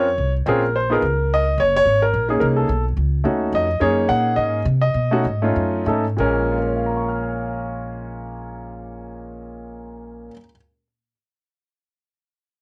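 A grand piano and an upright bass start together, setting a swinging, late-night jazz piano trio mood in Bb minor at a brisk 182-215 BPM, with the eighth notes lightly swung. The piano carries the melody across a broad range from Bb2 to F6, its tone clear and intimate, with the mechanical noise of its action audible and notes that sustain long. Beneath it, the pizzicato upright bass sits woody and close on steel strings, moving over chords such as Bbm9, Gb69 and B7. The pace slows between 3.8 and 6.2 seconds before the harmony settles on Bbm7, and the bass stops at 10.3 seconds, just ahead of the piano. A light reverb and the soft grain of a home cassette recording give this brief cut from a longer piece a private, after-hours feel.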